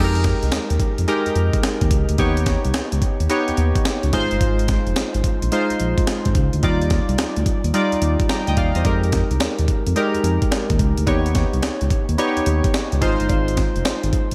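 Bouncy and punchy, this new jack swing R&B excerpt at 108 BPM rides a swung 16th-note feel, with up-front analog keys of round, ring-modulated tone and chorus voicing chords such as Fm11 and Ebaug7, a smooth, dark synth bass, a gritty, compressed, pitched-up breakbeat kit with a thumpy kick and gated reverb entering at 0.2 seconds, and a very quiet metallic cowbell joining at 8.8 seconds, set in a light digital ambience.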